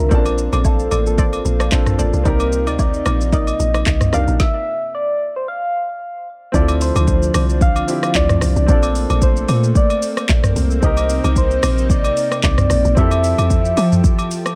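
A deep, round log drum bass sits up front in this relaxed, soulful amapiano excerpt at 112 BPM, joined by an electronic Afro-pop kit with woody snare and metallic hats, close, dry agogo bells and woodblock, a clear baby grand piano, a lush, warbling unison pad, a gentle keys-like synth lead with vibrato carrying the melody, and soft, mellow pluck stabs that stop at 4.4 seconds as the groove pauses before dropping back in at 6.5 seconds over jazzy ninth chords.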